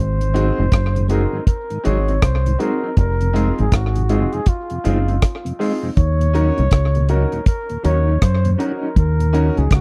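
A breathy, whispered flugelhorn carries the melody with light vibrato and dub echo over a dark, round, punchy fingered bass, opening this hypnotic, meditative roots reggae excerpt at 80 BPM with a swung sixteenth feel. From 0.2 seconds an acoustic drum kit with a tight kick joins up front on hi-hat, kick and rim click, while a mellow tonewheel organ with chorus vibrato, key click and slow rotary speaker sits in the background. A clean, fingered electric guitar with dub echo and woody upright piano stabs fill out the close, dry 1970s-style studio sound as the harmony moves from Fm7 to Ebm7 at 6.0 seconds.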